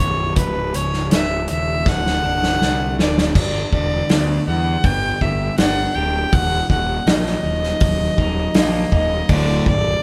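Caught live in one room with a light reverb, this cut from a quiet-loud alternative rock piece moves at 80 BPM in a cathartic, anthemic mood, as an earthy, biting bowed fiddle carries the melody up front over twangy, slightly broken-up guitar arpeggios through a small old amp in the background and a fuzzed, overdriven picked bass, while a loose, roomy indie drum kit with dark cymbals and a tight kick enters at 0.4 s and plays a fill from 1.9 s through chords moving from C#m and D7 to G and D#m, before a crunchy overdriven guitar riff joins at 9.3 s on D.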